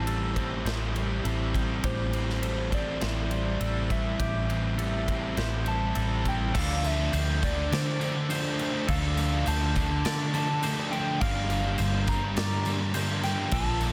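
Up front, a dark, round, foam-muted electric bass anchors this brooding, melancholic shoegaze and dream pop rock cut at 102 BPM in D minor, joined by a gentle FM synth lead carrying the melody through chorus and analog delay, a twangy clean guitar picking background arpeggios drenched in lush chorus and delay, a fuzz guitar and an overdriven guitar with reverse reverb churning out the riff, and a big-room acoustic drum kit with bright cymbals and a punchy kick, while a very quiet, double-tracked sludgy guitar enters at 6.5 seconds and a jingly tambourine at 6.6 seconds as the chords move from Am7 to Dm7 and Gm7 under a dense, heavily limited master.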